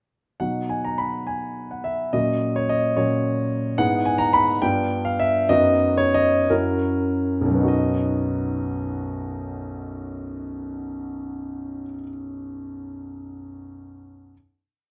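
Heard up close in a moderately reverberant recital hall, this brief, complete romantic character piece for solo concert grand piano in B major, tuned slightly below standard pitch, unfolds a hopeful, hymn-like chordal passage in a rubato 6/8 at 48-75 BPM, with a single-line melody over deep bass, intimate tone, long sustain and audible action noise, slowing from 3.0 seconds until a final B major chord arrives at 7.7 seconds and rings until 12.1 seconds.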